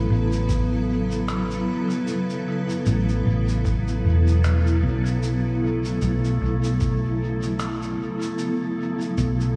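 A lightly swung 76 BPM pulse in 4/4 carries this hazy, meditative ambient dub excerpt, where a muffled, overdriven, pitched-down electronic kick thumps from 0.5 to 7.0 seconds beneath faint, compressed electronic cabasa and finger snaps trailing dub echo, while a dark, round hollow-body short-scale fingered electric bass sits up front under a cloudy, evolving granular pad with detuned unison and chorus that moves from A to B5 at 5.2 seconds, all threaded with a quiet, glassy harmonics texture of drifting overtones in a dreamy mix soaked in lush hall reverb.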